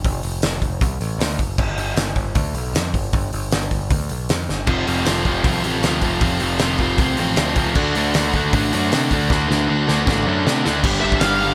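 Rowdy and upbeat, this punk rock clip drives along at 156 BPM in a straight 4/4, opening with a growling, punchy overdriven bass and a loose indie drum kit with a fat snare, punchy kick and dark cymbals in a pumping studio room, with drum fills at 4.5 seconds and again leading into the change to G. At 4.7 seconds two picked riff guitars crash in up front, one bright and distorted, the other a hollow-body semi-hollow with a warm overdriven tone, moving through F and D. A dark, smooth overdriven lead guitar just touches in with a high melody at 11.0 seconds before the clip cuts off, all under a light reverb.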